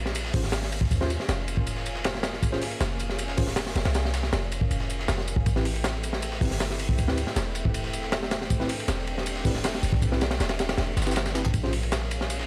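A crunchy acoustic breakbeat kit sits up front in this dark, raw drum and bass cut with a jungle edge. Its punchy kick, high-tuned snare, hi-hat and shadowy ride cymbal sound saturated and gritty, with a rolled-off top. Behind it, a dusty soul sampler-style kit adds compressed, overdriven hi-hat, snare and tambourine, high-pass filtered and tucked into the background. A deep, boomy 808-style bass with tube saturation runs the full 12.5 seconds, its sine tone carrying a noise layer and a fast attack that decays. A lush, thick pad of detuned sawtooth and square waves warbles with chorus as the harmony moves from Bbm7 to Am7 at 5.5 seconds, while a mellow tine electric piano places clean, direct stabs from 0.3 seconds, colored by 12-bit sampler grit and dub echo. Vinyl crackle and small room ambience frame the excerpt.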